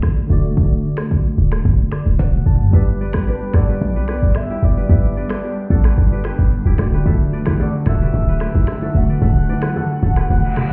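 A straight 4/4 afrobeats groove from an electronic afro-pop kit sits up front, its deep kick, woody snare, rim click, finger snaps, shaker and toms carrying a tape-warm character, while a short, punchy 808-style bass with a fast attack and tight decay fills the low end almost at once. A bell-like tine electric piano plays clean, bright accompaniment from the start and adds a fill, and a drum fill then leads into the second part at 2.7 seconds, where the harmony moves from D to G. Here a fingerpicked acoustic kora riff rings crisply through delay, a soft, breathy flute-like synth lead with vibrato, chorus and delay carries the melody, and an airy, warbling vintage pad holds sustained chords in the background. Congas and bongos played with soft hands join at 7.1 seconds, shortly after the chords return to D, and a short electronic reverse cymbal closes this breezy, sunny excerpt cut from a longer piece. 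The mix sounds muffled, as if heard through a wall, with a faint stone-room tint.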